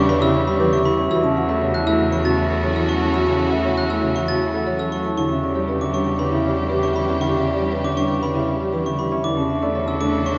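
Minimalist classical pattern music, meditative yet urgent, moving in a straight four over a cello that holds a low E with rich, distant vibrato while the harmony shifts from Em7 to F#m/E and later Dsus2/E. A ringing, mellow vibraphone with slow motor vibrato carries the melody above a very quiet, smooth clarinet line. The concert grand gives open accompaniment with deep bass, a lush violin section sustains focused chords, and arpeggios come from a woody, rustic marimba and a bright, sparkling, bell-like glockenspiel struck with brass mallets, all in a cathedral reverb whose tail lasts 5.1 s.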